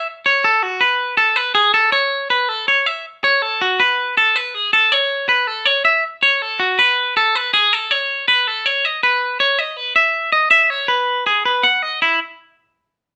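This rock recording, cut from a longer piece, features a solo electric guitar with a bright, intricate mood. The guitar has a clean, picked and twangy tone, sitting up front in the mix. Its line moves through a range from E4 to F#5 in straight 4/4 time, playing from the opening until 12.2 seconds. The music shifts into new sections at 9.0 seconds and again at 12.0 seconds. A light reverb and the feel of a band playing live in one room give the sound a natural, open presence.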